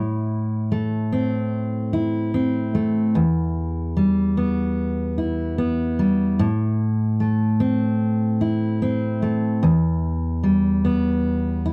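A solo fingerpicked steel-string acoustic guitar opens this short pop excerpt at 74 BPM, its jumbo body giving a dark, full-bodied tone that sits up front in a dry, close 1970s-style studio sound with light reverb. The mood is heartfelt and hopeful as the guitar alternates between Am and Em in straight 4/4, ranging from E2 to E4. The lone guitar carries the whole passage, which runs to 11.7 seconds and is cut from a longer piece.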